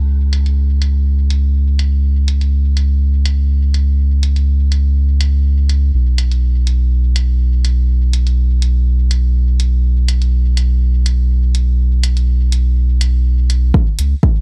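Hazy and deep with little reverb, this dub techno excerpt rides a soft, round sub bass with sidechain pumping, joined at 0.3 seconds by a low-passed, tape-warm electronic hi-hat, before an up-front electronic kick drum lands at 13.7 seconds.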